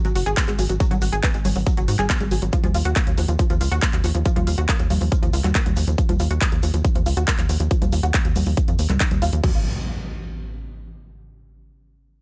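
A straight 4/4 pulse at 139 BPM drives this euphoric yet bittersweet uplifting trance excerpt, as a punchy, overdriven electronic kick enters up front at 0.4 s beside a tight, driving sawtooth sequencer bass with tube saturation and sidechain pumping, an overdriven big-room kit of congas, handclaps, hi-hat and crash cymbal with sidechain pumping on its hats, percussion and cymbals, a grainy tube shaker in the background, and a round, detuned analog pluck playing arpeggios through chorus, delay and sidechain pumping under a filter sweep over G#m7 and D#madd9, the mix staying dry and close until an electronic impact hits at 9.4 s on F#sus2/G#.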